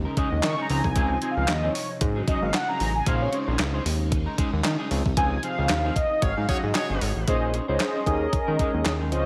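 In a lightly reverberant mix, this slick, funky early-eighties boogie funk excerpt rides on a crisp, overdriven 8-bit drum machine with thumpy kick, handclaps and gated reverb, set up front beside a fat, detuned sawtooth bass with a filter sweep. Mellow, brassy synth brass with chorus and vibrato, a dark, clean fingered electric guitar riff and a very quiet, lush string machine with phaser carry the sus4, major-ninth and minor-eleventh chords, while an analog polysynth solo runs from the opening to 7.3 seconds. The band hits an accent from 5.2 seconds, and a clear horn section with tape echo slips in a brief second line at 6.2 seconds before the string machine drops away.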